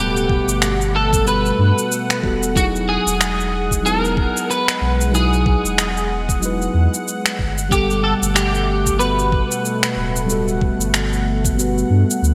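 A bright, 1980s-style digital production bathed in a lush hall reverb gives this short cut from a longer sunset chillout piece a relaxed, smooth glow. Up front, an electric guitar sits at the edge of break-up, picked and compressed, carrying the melody through an ensemble chorus and delay. Beneath it, a mellow FM electric piano with a dark, round tone and a faint noise layer plays the accompaniment, roughened by vintage 12-bit sampler grit, while a thick, detuned sawtooth unison pad holds slow-blooming chords. A deep sine sub bass anchors the low end, and the swung groove comes from electronic cabasa and finger snaps, tape-tinged and treated with gated reverb, over a knocking electronic kick that drops out at 11.6 seconds. The harmony moves from Gmaj9 to Emaj9 at 2.6 seconds and returns to Gmaj9 at 7.4 seconds.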